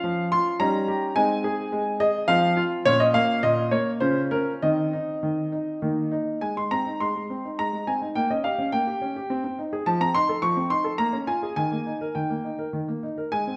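Bathed in a moderate recital-hall reverb, this 13.6-second excerpt of an elegant, playful classical-period sonatina in Ab major features a warm, smooth, vintage grand piano heard up front and alone, moving in a rubato 3/4 at 104 BPM across a range from Bb2 to Db6, with a new phrase arriving at 6.4 s that returns to Ab and passes through Gdim/Bb, F7 and Bbm7 before settling on Eb.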